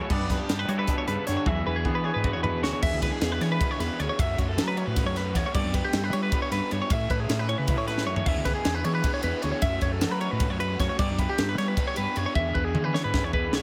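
Three guitars start together: a twangy clean guitar with a warbly pitch drift that drops out at 4.2 seconds, a compressed twelve-string playing bright arpeggios up front through a slapback echo, and a raw, double-tracked garage guitar pushing an overdriven lo-fi riff. A growling fingered bass with its own overdrive and a crisp fusion kit, with bright cymbals, a high-tuned snare and a punchy kick in a pumping small room, join almost at once. This math rock and midwest emo piece is cut from a longer work, running in an intricate 7/8 with a straight feel and a bright mood. Chords such as Gmaj7, E9, E7, F#m7 and Amaj7 pass by, shifting from the opening section into a longer second part at 2.8 seconds. The drums mark the journey with fills, including one at 8.0 seconds and another closing the passage, all under a light reverb.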